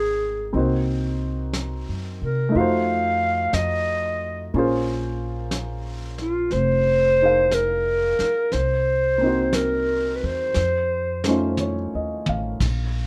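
A mellow clarinet with vibrato and scooped notes carries the melody from the opening moment, sitting up front in plate reverb over a baby grand piano with audible action noise and a woody, thumpy pizzicato upright bass on gut strings, in a smoky, intimate jazz ballad in Bb minor at 60 BPM with a swung feel. A vintage brush drum kit with dark cymbals, a fat snare and a punchy kick joins at 0.5 seconds and plays a fill from 10.6 seconds, just before the clarinet stops at 11.6 seconds, while the harmony moves through Bbm9 and half-diminished chords to a closing F7b13. The sound is a rough home demo in a moderate studio room, cut from a longer piece.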